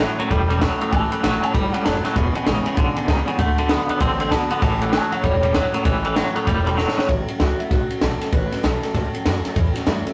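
Rockabilly excerpt with a rowdy, retro swing, where an electric guitar through a small old amp carries the melody with a slightly broken-up tone over a bright, full-bodied picked acoustic guitar in the background, while a clean, scooped, twangy electric riff with tremolo sits up front until 7.1 seconds, a woody, thumpy pizzicato upright bass holds the low end, and a compact cocktail drum kit with a punchy kick and high-tuned snare drops in a fill at 6.8 seconds, all heard in a rough rehearsal-room recording with light reverb and warm saturation.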